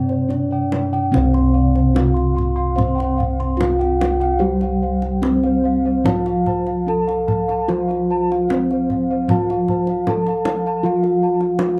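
Closely miked and detailed with a light reverb, this serene, shimmering fragment of Javanese gamelan moves in 4/4 with uneven beats. A mellow, ringing bronze metallophone carries the melody dry and up front, over a lower metallophone accompaniment, while dark, smooth bossed gongs hold the bass. Higher up, bossed-gong and airy metallophone arpeggios add a slapback echo, the paired tuning producing shimmering beats, and a tight, vintage-sounding kendang joins at 0.1 seconds.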